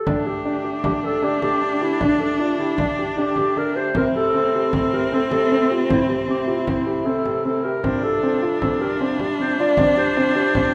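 Set in a straight 5/4 at 154 BPM, this restless, playful piece of contemporary chamber music moves through Gsus2, C6 and Fsus2 in just over ten seconds, cut from a longer work. A distant, dark clarinet carries the melody in a classical solo style, an up-front, rich bowed cello with smooth vibrato sings a second line, a worn, mellow baby grand piano plays long-sustaining arpeggios, a reedy, breathing pedal harmonium holds sustained chords lower in the mix, and a deep, saturated frame drum adds compressed percussion. The sound carries the moderate reverb of a church or concert hall, with some lossy compression artefacts.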